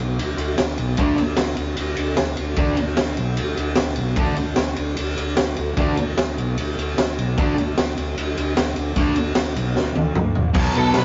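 A rough rehearsal-room recording with tube saturation, vinyl crackle, a dulled top end and a small room's short reverb frames this raw, rowdy garage rock excerpt at 150 BPM in D major, driven by a pumping acoustic kit with a high-tuned snare and punchy kick alongside a round, overdriven fingered bass. From 1.0 seconds a bright, double-tracked fuzz guitar picks its riff up front over the D5 chord, and a drum fill from 9.8 to 10.6 seconds leads into a dark octave-fuzz lead guitar that enters at 10.8 seconds just before the cut.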